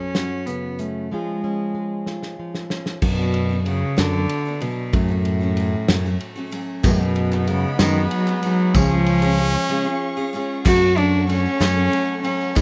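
A bowed cello sings a yearning, wistful melody over fingerpicked acoustic guitar and a loose, dark-cymbaled drum kit in this slow 6/8 indie folk excerpt, before a bright picked acoustic guitar and round, punchy electric bass take over at 3.0 seconds, and a lightly vibratoed trumpet, hushed sul tasto strings, faint handclaps and a jingly tambourine join at 6.8 seconds, building toward a break and a return to F#m in a rough, small-room home demo sound.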